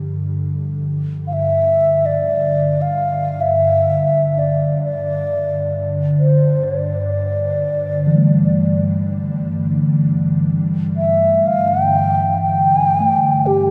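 Unfolding in free time, this haunting, meditative world piece, cut from a longer work, rests on an ethereal, airy pad drone that sustains throughout with ensemble chorus and its own reverb. A metallic bronze singing bowl rings with slow beating at the very start and returns from 8.1 s, while a pure, hollow alto flute with gentle vibrato, soft attacks and delay carries the melody up front from 1.3 s. A vast cathedral reverb surrounds the whole piece, lending it a deep, echoing sense of space.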